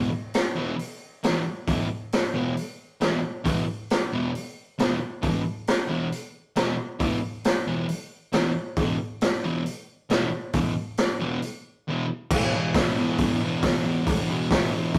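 A straight 4/4 pulse at 136 BPM drives this swaggering, menacing garage rock excerpt, cut from a longer piece and built on a fuzz guitar riff from E2 to E3 that opens on an E5 chord at 0.0 seconds, double-tracked, compressed and distorted. A raw garage drum kit joins at 0.3 seconds with crash cymbal, hi-hat, boomy kick and a medium-tuned snare, its sound saturated and gritty with a rolled-off top, both parts placed up front. The rough rehearsal-room recording carries a moderate studio reverb, and the music moves into a new section at 12.3 seconds.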